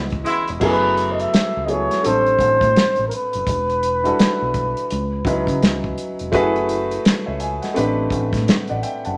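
A band accent with brief, clear horn-section stabs at 0.2 seconds opens this smooth, introspective neo-soul R&B excerpt at 84 BPM with a swung 16th-note feel, where a breathy, mellow flugelhorn with vibrato carries the melody until 6.0 seconds over a woody, intimate upright piano with audible action noise, a deep, round fingered electric bass and a dark soul drum kit with a punchy kick, all set in a moderate large-studio reverb through minor seventh and minor eleventh chords.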